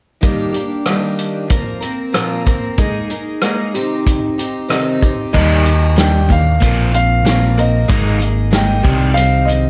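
A bright, shimmering picked twelve-string acoustic guitar, octave-doubled with audible finger squeak, opens this dusty, reflective folk rock and heartland rock passage at 94 BPM in 4/4. It plays alongside an up-front natural country drum kit with a tight kick, medium-tuned snare, rim click, hi-hat and crash, cycling through Ebmaj7, Bbsus2, Absus2 and Cm. At 5.3 seconds a dark, mellow baby grand piano takes the melody with long sustain and analog delay, while a crunchy, double-tracked overdriven guitar plays a riff and a round, amped electric bass sits up front, all framed by light reverb and a warm production in this fragment cut from a longer piece.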